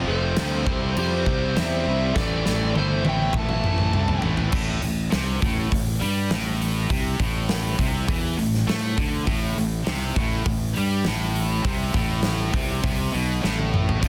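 A straight 4/4 pulse at 101 BPM drives this aggressive, heavy hard rock excerpt in A minor, cut from a longer piece. The big acoustic rock kit, up front with a punchy kick, medium-tuned snare, bright cymbals, hi-hat and toms, enters at 0.4 s and plays fills leading into the second section and again near the close. Beneath it, a fuzzy, round, dark fingered electric bass sits prominently in the mix, while three tight, picked, distorted guitars play the riff in the background over F, C and A minor chords; one of them is double-tracked, and another drops out for a stretch after 4.5 s. Over the opening bars, a smooth, overdriven lead guitar carries the high melody while a twangy, slightly broken-up, compressed second lead with analog delay adds a quieter line beneath it, both falling silent at 4.2 s. The sound is dense and heavily limited, with small room ambience around the band.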